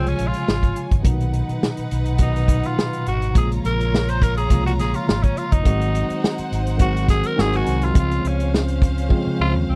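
A raspy, gritty tenor saxophone solo opens this smooth, warm slice of lush 1970s-style soul, its bright vintage vibrato riding over a focused, bowed violin section, a worn and slightly out-of-tune electric piano with light overdrive, and a round, amped fingered bass. The acoustic drum kit sits up front with a tight kick, medium-tuned snare and hi-hat, and adds a fill at 9.1 s as the chords move from Dbmaj7 through Cbmaj7, Bbm7 and Ab7 before landing back on Dbmaj7. Little reverb keeps the sound close and dry.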